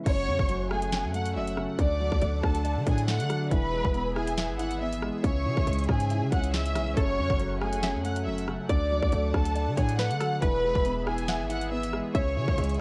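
Cold and tense, this half-time drill hip hop cut at 139 BPM in F# minor sets a lush, vibrato-rich violin section melody over a soft, felt-muted upright piano with audible action noise and an airy, detuned sawtooth pad with chorus sitting in the background. A punchy, heavy 808-style bass and an electronic drum kit with a hard-clipped kick, sharp snare, metallic hats, rim clicks and crash drive the cycle of F#m, D, E and C#m. At 7.0 seconds a twangy, string-like resonator pluck with chorus and delay adds a second line, while the dry mix carries the worn, warbling pitch drift of old cassette tape.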